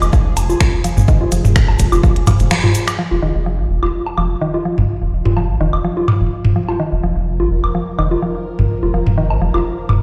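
Clinical and hypnotic, this minimal techno cut from a longer piece rides a lightly swung 4/4 groove. A rubbery, hollow square bass sits up front through the whole passage, pumping against the sidechain, while overdriven electronic woodblock, congas and toms, also up front, throw dub echoes across the stone room reverb of a big sound system in a bare space. A punchy, layered electronic kick drives the opening drop until 2.4 seconds, alongside a grainy egg shaker in the background, and is soon joined by a minimal click kit of finger snaps and low-pass filtered hi-hats; the shaker and kit stop at 3.0 seconds, just after a band accent at 2.5 seconds. Over the Fm harmony of the first section, a woody, round, mallet-like FM pluck plays a short riff with chorus and delay, continuing into the chordless second section until 9.4 seconds. Alongside it all, a bright, resonant sawtooth texture bubbles through random filter steps, its chorus and built-in reverb breathing with the sidechain pump.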